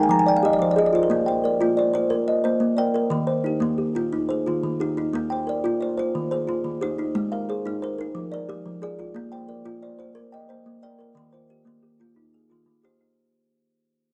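Southern African traditional music, this short excerpt cut from a longer piece has a warm, hypnotic mood, moving at 119 BPM in a straight 12/8 feel in Bb mixolydian. Two kalimbas play arpeggios throughout, both up front with a woody, hollow-box tone. One has a soft, airy fingertip pluck with mellow, short notes, while the other has a ringing thumbnail pluck that sits mid-forward. A kalimba fill opens the first 1.1 seconds, and the whole passage fades out across its length as the chords cycle through Fm, Bb, Eb and Ab. The dark production places the instruments in a modest booth ambience.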